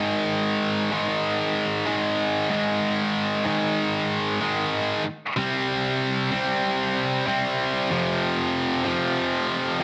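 Rock in a menacing, heavy mood, this brief excerpt cut from a longer piece features a single tight distorted electric guitar playing alone throughout, bright and picked, double-tracked and placed up front. The guitar moves through power chords on Ab, C and F in a straight 4/4 feel. Light reverb surrounds it, and the mix has a dense, heavily limited modern master.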